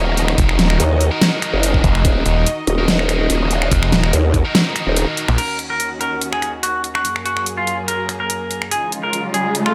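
Heavy wobble dubstep in Eb minor at 144 BPM with a half-time feel, this menacing, chaotic excerpt opens straight into the drop, where a growling, formant-filtered growl bass and a snarling, detuned sawtooth bass sit up front in the low end, joined by a knocking electronic kick with a tape-warm edge. A scooped, double-tracked high-gain guitar fires distorted stabs through tape echo, while a muted, con sordino string section holds veiled sustained chords underneath, pumping against the sidechain and darkened by a low-pass filter. The dubstep drum kit carries a huge snare, bright hats, finger snaps and crash cymbal in studio reverb, and it plays through to the end. The kick drops out at 5.0 seconds, the growl bass falls away at 5.1 seconds, and the band hits an accent at 5.3 seconds. After that the saw bass and high-gain guitar stop, and a clean, twangy picked electric guitar takes the melody over strings and drums as the harmony moves from Ebm7 through Gbadd9 to Dbadd9. 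An electronic riser enters at 9.0 seconds to close the passage, all set in light reverb with a digital ambience.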